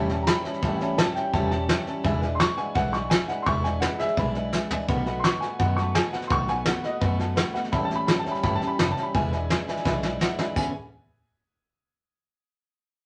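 Bathed in a wet studio reverb, this rollicking, rowdy rockabilly cut sets a slightly detuned, vintage upright piano on the melody over a second smooth upright piano in accompaniment, a full-bodied picked steel-string dreadnought acoustic guitar, a woody, thumpy pizzicato upright bass on gut strings, and an up-front soft brush drum kit with a fat snare and tight kick that adds drum fills at 4.5 and 9.9 seconds.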